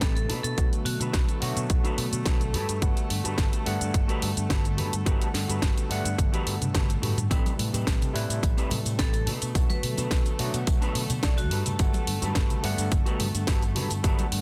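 Sunny and groovy, this nu-disco excerpt moves at 107 BPM in G major, driven by a punchy, overdriven electronic kick up front and a house drum kit with a cracking snare, hi-hat, shaker and toms, with a drum fill at 6.2 seconds before quiet, close tambourine and congas join at 7.3 seconds. A growly fingered electric bass anchors chords such as Bm7, Gmaj9 and Am9, while a barky, gritty tine electric piano with medium tremolo and delay carries the accompaniment and a dark, clean electric guitar plays a riff through chorus and delay. Reedy chamber strings with gut-string tone sustain chords in the background under sidechain pumping, and a ringing vibraphone with hard mallets adds brief delayed melody at the opening and again around 9.0 seconds, all within a dense, heavily limited and dry modern mix.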